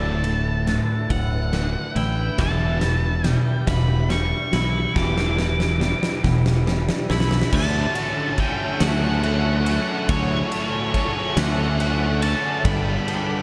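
This short post-rock excerpt opens on a Dsus2 chord with everything but the drums sounding at once: a dark, fuzzed-out lead guitar carrying the melody high in its range through distortion and tape echo, a mellow, airy pad holding sustained chords in the background, a twangy, compressed clean guitar picking arpeggios, a double-tracked, overdriven stack guitar playing a riff up front, and a growling, overdriven fingered bass anchoring the low end. The huge arena drum kit joins at 0.2 seconds with a fat snare, punchy kick, crash and ride, and a drum fill runs through the opening build-up as the harmony moves to Em7. At a slow 47 BPM in a straight 6/8, the mood is soaring and cinematic, set in D major. The twangy guitar stops at 7.5 seconds, where the second section begins on Dmaj7 before turning to Gadd9 near the close. The whole mix is dreamy and soaked in plate reverb, with the bass and stack guitar pushed forward and the pad hanging back as a hazy wash.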